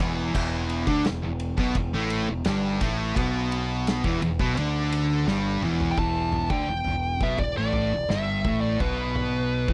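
A straight 4/4 groove drives this ominous, hypnotic stoner and doom metal excerpt, where an oversized, low-tuned drum kit with a punchy kick, medium-tuned snare, toms, dusky crash and ride cymbals and a gritty, saturated sound pounds beneath an overdriven, growling fingered bass and two thick fuzz guitars in the background, one murky and one mellow, all churning a heavy riff alongside a bright, double-tracked overdriven guitar that drops out at 6.0 seconds after a drum fill, just as a fuzz lead guitar with wah, played up front, enters at 5.9 seconds with a high melody, all captured in a dry, close 1970s-style studio sound.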